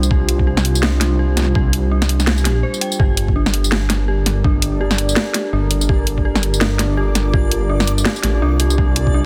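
Dense, heavily limited and fairly dry, this dark, cinematic half-time drum and bass fragment sets a gritty, overdriven kick and a cracking, bright-hatted electronic kit with tambourine up front against a rumbling, detuned sawtooth bass. Eerie, inharmonic FM bell arpeggios with chorus, tremolo and delay shimmer over a deep, moody ambient pad that pumps in the background, moving from Csus4 to Gmadd9 after a brief break at 2.6 seconds. From 4.1 seconds a dreamy, reversed granular texture drifts in softly behind everything.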